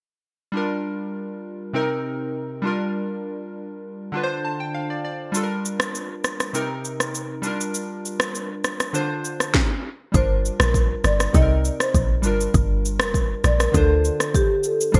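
Mellow and hypnotic, this afrobeats piece opens on warm analog keys with a detuned, wave-folded character and a touch of chorus, working through a cycle of minor seventh chords, with a keys fill just before the afro-pop drum kit arrives at 5.3 seconds bringing a deep kick, sharp snare, rim click and shaker under gated reverb. At 10.1 seconds a deep log drum bass enters with a dark, round, percussive tone, and a moment later a woody marimba played with medium mallets carries the melody through a digital delay. The bright digital production recalls the 1980s, with light reverb and ambience, in a passage cut from a longer piece.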